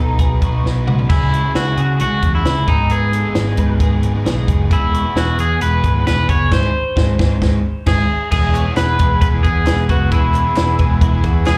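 A straight 4/4 pulse drives this breezy, youthful jangly indie pop excerpt heard live through a club PA, where a dry cocktail kit with a punchy kick, a high-tuned snare and dark cymbals plays a fill at 0.6 seconds under a round, foam-muted picked bass, a raw overdriven garage guitar, a twangy, slightly broken-up lead guitar carrying the melody through spring reverb and slapback echo, and a bright twelve-string playing chorused arpeggios in the background, before a band accent at 6.5 seconds gives way to a buzzy combo organ from 8.3 seconds and very quiet, hollow group handclaps.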